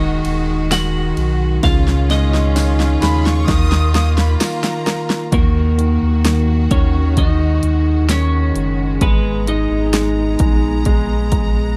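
A longing, emotional pop ballad fragment opens with a bright, twangy twelve-string electric guitar carrying the melody over an intimate concert grand piano, smooth bowed strings and a deep, up-front sine sub bass, as a punchy, layered deep house drum kit enters at 0.2 seconds and plays a fill, a jingly tambourine sits in the background until 4.6 seconds, and a rich, close violin section adds a brief high second line from 3.0 seconds, all in a dark, dry production.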